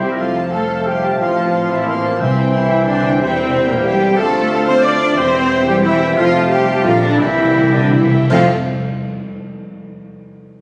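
Classical orchestral music, this fast romantic movement for symphony orchestra in 3/4 has an urgent, dramatic character and a rubato feel that slows down from 5.7 seconds. Up front, a lush viola section carries the accompaniment over a close cello section and a distant double bass section, with a mellow tuba and a roomy bassoon beneath, while a very quiet French horn section holds soft-attacked sustained chords. A rich violin section sings the melody from the background, and a focused second violin section, a hollow silver flute, an oboe and a faint clarinet weave second lines around it. Timpani played with medium mallets sound close and up front, first briefly at 2.2 seconds and then in a fill from 7.2 seconds, as dark cymbals and concert bass drum join from 6.2 seconds for a full-band accent at 8.3 seconds. The sound is heavily reverberant and compressed, with the character of a phone recording made in the room, and the passage is cut from a longer piece.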